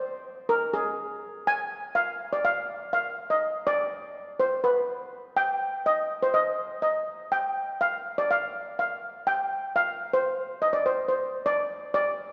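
A solo steel pan carries this brief calypso excerpt, its metallic, shimmering tone softened by rubber sticks into something mellow and gentle. The instrument is a double seconds, playing alone from 0.0 to 12.3 seconds and ranging from Ab4 to Ab5. The music sits in C minor at 123 BPM in a straight 4/4, and its mood is intense and driving despite the soft touch of the pan. The sound has a vintage, band-limited character, with the pan placed up front yet wrapped in a wet concert hall reverb whose 2.5-second decay fills the space like a church or large hall. The recording is cut from a longer piece.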